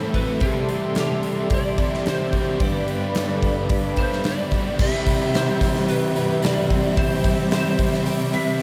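Dreamy and hazy, this short excerpt of shoegaze-leaning dream pop rock drifts through Cadd9, G and Cmaj7 in a steady 4/4, with a gated 80s drum kit punching up front beneath bright cymbals while a soft-attacked bass clarinet carries the low end. A slightly broken-up, compressed lead guitar sings the melody through ensemble chorus and diffuse delay, over background layers of dark fuzz and sludgy double-tracked guitar riffs, a hollow-body overdriven guitar with reverse reverb, a brassy, detuned analog pad, and a very quiet shimmering twelve-string acoustic picking arpeggios. A faint jingly tambourine joins at 5.1 seconds, and the whole mix is soaked in a vast cathedral reverb.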